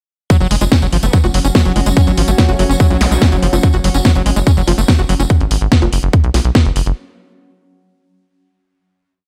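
The recording sits in a digital ambience, with the kick pushed up front and the drums carrying a studio reverb. This is a complete, hypnotic and intense psychedelic trance piece at 144 BPM in straight 4/4, tuned to A4 = 439 Hz, and it drives as a single drop from 0.3 seconds to its close. A tight four-on-the-floor electronic kick anchors a layered, programmed kit of cracking snare backbeat, bright open and closed hats and high bongos, while a jingly, hand-played tambourine adds small-room sixteenths. A punchy sawtooth-and-square sequencer bass rolls in sixteenths with a fast filter pluck, and above it a screaming acid line, squelchy, resonant and distorted with chorus, delay and sidechain pumping, loops a 12-step accented riff that drifts against the bar. Far back, a swarming, detuned granular drone and a nostalgic, lo-fi, wave-folded pad with slowly shifting chords and pumping chorus hold the harmony. 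A very quiet formant-sweep wobble bass offers short answering phrases between 1.0 and 2.9 seconds, and a faint electronic zap marks a transition at 3.0 seconds.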